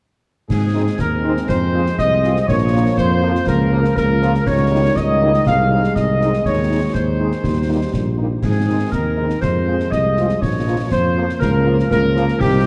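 This military-style march for wind band moves at 121 BPM in a straight 2/4 in Ab major, with a spirited, proud mood. A dark trumpet section carries the melody with light vibrato in a classical style, while the woodwind section plays a tight second line in the same register, and a mellow trombone section sustains chords in the background. The tuba sits up front with a smooth top, giving the bass a firm presence, and a vintage-toned French horn section supplies accompaniment from just after the start until about 12.2 seconds. Concert snare, clash cymbals and concert bass drum sound close and dry, the cymbals dusky in colour. The harmony moves through Ab, Fm and Bbm, touches Eb7 over Db and returns home by way of Eb. All of this sits in a reverberant concert hall with a warm overall production, in an excerpt of about 12 seconds taken from a longer piece.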